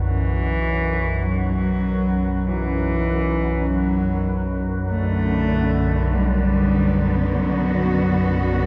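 A vast, cavernous reverb hangs over this dark, warm production, giving this brief cut from a longer piece a desolate, cathedral-like depth. It is dark ambient drone in B minor, moving at a slow 49 BPM in a straight 4/4, resting on a single B minor chord throughout its 8.7 seconds. Up front, an organ-like drone sits low, with a detuned, warbling vintage character, slow attack and long release, thickened by ensemble chorus. A lone bowed cello carries the melody alongside it from the start, its gut-string tone reedy yet smooth on top in a period style, with a delay trailing behind it. At 4.9 seconds a lush cello section enters with sustained chords, its focused, vibrato-laden bowing adding a rich studio sheen around the solo line.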